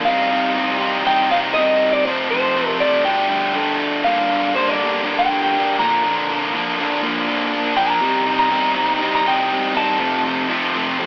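Brooding and cathartic, this rock excerpt pairs a bright, double-tracked fuzz guitar riff, compressed and up front, with a twangy, lo-fi lead guitar through a small old amp, slightly broken-up. A clean electric guitar solo starts at 4.0 seconds, all under light reverb and an AM-radio sound.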